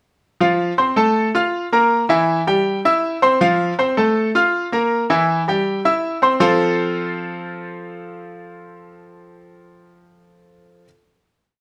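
In a straight four-beat Latin groove, a sunny, festive solo grand piano plays a brilliant, up-front montuno in octaves with short sustain over a moderate studio reverb, moving between tonic and dominant-seventh harmony before settling on a final chord at 6.4 seconds that rings to the end of this brief complete piece.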